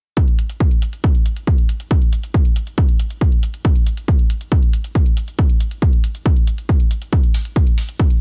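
From 0.2 seconds a heavy, layered electronic kick drum sits up front with a tape-saturated weight, alongside soft, low-pass-filtered electronic hi-hats far lower in the mix, both carrying a dry small-room character in this soaring, emotional uplifting trance fragment cut from a longer piece.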